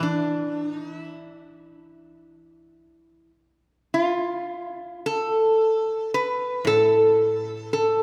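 Austere and calm, this brief excerpt of Japanese chamber music in the traditional style moves at a slow, rubato pace of about 50-58 BPM in 4/4, tuned slightly high to A4 = 441 Hz. A metal-body resonator slide guitar carries the melody from start to finish, sitting between E4 and B4 with a metallic, nasal voice shaped by fingerpicks and slide, placed up front in the mix. Beneath it, a koto supplies accompaniment in the low register from A2 to E3, its fingerpicked tone dry and woody and set well back behind the lead. The passage falls into two sections, the second beginning at 4.5 seconds. A moderate church reverb with a long 3.4-second decay surrounds the recording, lending the sparse pairing a spacious, resonant setting.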